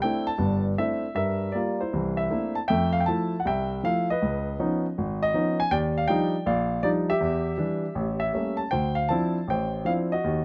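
A polished, up-front grand piano sits close to the microphones with light reverb, its tone present and its notes decaying quickly, in a short solo jazz passage cut from a longer piece. The playing swings at a brisk pace in 4/4 yet bends the time freely, reaching from deep G1 to A5 in a sophisticated, playful mood. Rich harmonies such as C69, Db9, Ebmaj9 and A7b9 pass by, with a new section beginning at 2.7 seconds and the passage resting on Dm9 at 8.7 seconds.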